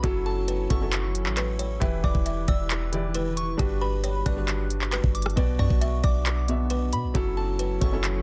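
Hip hop in a trap style, this dark, hard-hitting excerpt moves at 135 BPM in 4/4 with a half-time feel, set in B minor and cycling through F#m7, Em, Gmaj7 and Bm over its 8.2 seconds. A buzzing kalimba carries the melody with a woody, thumbnail-plucked tone and short notes, sent through digital delay, while a soft FM synth bell traces a second line higher up, its pure, decaying tone colored by chorus, phaser and delay. A felt-muted upright piano supplies intimate accompaniment, mellow and natural with audible action noise and short sustain. Beneath them sits a warbling, tape-like pad of detuned, lo-fi sustained chords with slow attack and long release, kept in the background with chorus and its own reverb. Up front, a clean, boomy sine 808 bass and an electronic trap kit of knocking kick, crisp hi-hat, handclaps and rim click drive the groove. The sound is dry overall and the master is dense and heavily limited, with the drums and bass standing loudest.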